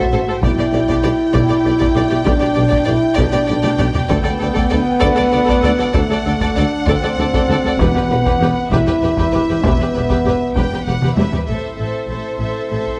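Moderate scoring-stage reverb gives this heroic, dramatic film-score excerpt a spacious, roomy sound. It moves at a stately 65 BPM in 6/8. A mellow French horn section sits up front holding sustained chords. Around it, a close, smooth first violin section carries the melody, with a clear, intense second violin line and a lush viola accompaniment under it. The bass is a distant, rich bed of cellos and focused double basses in the background, with a very quiet warm tuba joining them. A band-limited, vintage-sounding taiko ensemble struck with hard sticks drives the rhythm with short fills, and soft-mallet timpani add a round, very quiet note at 7.8 seconds as the harmony moves through G/B, D and Em before settling on Am at 11.5 seconds.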